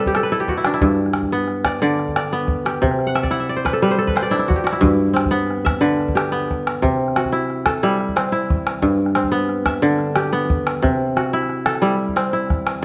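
A ringing, crisp kora opens this flowing West African excerpt with fingerpicked arpeggios up front in a straight 12/8, adding fills at the very start and again from 3.1 to 4.8 seconds. A deep, band-limited calabash with a vintage character keeps time beneath it, while the harmony rocks between C and G and the music moves into a new section at 4.8 seconds. A moderate recital-hall reverb gives the pair a natural sense of space.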